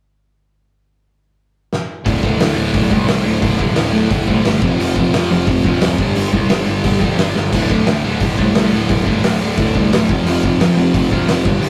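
Punk rock at 176 BPM in D minor, angry and raw, cut from a longer piece and captured in a rough rehearsal-room recording with light reverb. A loose indie drum kit with a fat snare, tight kick and dark cymbals fills in at 1.7 seconds, then at 2.0 seconds a sludgy, double-tracked overdriven guitar riff enters up front, while a growly, fuzz-laden picked electric bass with a bright edge churns in the background from 2.1 seconds. The riff moves through D5, F5 and G5 power chords, and a second drum fill lands at 7.4 seconds.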